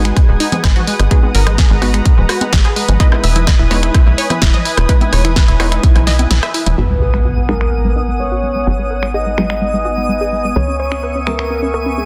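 Driving and expansive, this progressive house passage moves at 127 BPM in 4/4 with a straight feel, set in G# minor and shifting from G#m7 to Emaj7 before returning to G#m7 and moving to C#m7. A thick, warbling pad with chorus holds sustained chords over a tight sawtooth sequencer bass, while one detuned unison pluck fires stabs through delay and a second pluck with a cassette-tape tint spins arpeggios in the background, all of these breathing with sidechain pumping. The house kit brings a punchy, softly clipped snare, finger snaps and bright hats in a small room, joined by an up-front electronic kick and tape-warm rim clicks and congas tucked behind, until the kick drops out at 5.9 seconds and the percussion follows at 6.8 seconds as a short break ends. At that point an electronic impact hits, filter sweeps open on the drums, a pluck and the pad, and a round, octave-layered synth lead with vibrato, chorus and delay carries the melody. 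From 7.0 seconds a twinkling granular texture adds a sparkling, octave-up shimmer high above, all within a dense, heavily limited modern master with light reverb, cut from a longer piece.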